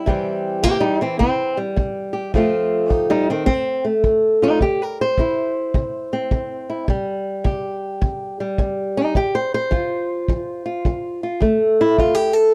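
A fingerpicked old ladder-braced acoustic guitar sits up front, its dark, woody, boxy tone and old strings carrying the melody through a short, soulful and gritty country-blues passage that moves between C and F over swung eighths. Behind it, a tight kick drum played with brushes sounds distant and roomy, entering at 0.1 seconds and stopping at 12.2, while the guitar rings on to 12.5 in an otherwise dry setting.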